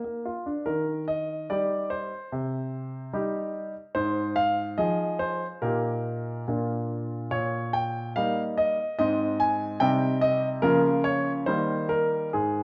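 A straight, even two-beat pulse carries this cheerful, playful classical-period sonatina, taken from a longer piece. A solo concert grand piano plays throughout, from the start to 12.6 seconds, ranging from the low bass to the upper treble. Its tone is clear and polished, with deep bass and a short sustain, and it sits up front and present in the mix. The harmony opens on a dominant chord and settles into the home key at 0.7 seconds, passing through minor and seventh colourings before returning home at 11.5 seconds. A moderate recital-hall reverb surrounds the instrument, and the overall production is dark and warm.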